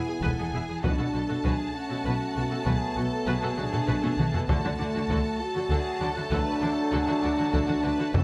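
Dark French horns and hard-stick taiko drive this epic, relentless orchestral film-score excerpt at 66 BPM in 12/8, with a lush, vibrato-rich high violin melody, a smooth second violin line in the background, distant violas, clear trombone chords, warm bowed cellos and woody double basses moving through E, Bm7 and D, while a taiko fill breaks in from 3.6 to 4.5 seconds and an articulate timpani stroke lands up front at 8.1 seconds.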